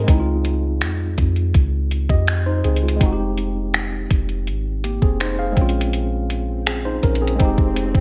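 Longing and sensual, this contemporary R&B piece moves at an unhurried 82 BPM in F minor, with a worn, slightly out-of-tune tine electric piano, lightly overdriven as if through built-in speakers, carrying chords from Dbmaj9 through Fm7 and Bbm7 to Fm9. A deep, round 808-style bass with a fast attack and dark decay sits up front beside a crisp 8-bit drum machine whose thumpy kick, hi-hat and finger snaps have a sampler-style, tape-tinged character and the air of a large room. At 7.2 seconds, an electronic swell rises in the background of the digital ambience as the passage, cut from a longer piece, ends.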